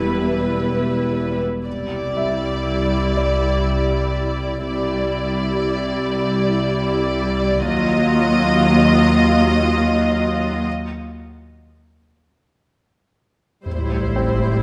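An up-front violin section carries a smooth, lightly vibrato melody over warm violas, a lush, focused cello section and distant double basses in this ominous, tense cinematic cue at 60 BPM in 3/4, with a bright, worn grand piano with audible action noise sitting in the background until 7.7 s and returning at 14.2 s, a very quiet high violin layer in the opening second, a break at 10.7 s and a huge sub drop striking at 13.7 s, set in a wet scoring-stage reverb.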